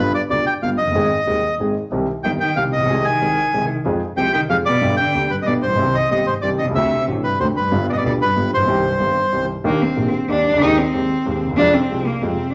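A reedy bandoneon opens this sultry, melancholic tango excerpt, carrying the melody up front over an intimate concert grand piano and a focused, bowed double bass with vibrato sitting quietly in the background. The piano accompaniment is smooth and vintage in character, with deep bass and audible action noise, and sits up front. At 2.2 seconds a bowed cello joins with a second line, its soft attack, portamento and expressive vibrato placed close and forward. The piece moves at 186 BPM in 3/4 with a rubato feel, in C harmonic minor, moving through chords such as G7, Cm, Fm and D7. The bandoneon falls away at 9.5 seconds, and from 9.7 seconds the cello takes a solo over Ebmaj7, Abmaj7/Eb and Fm, all within a wet, large studio reverb.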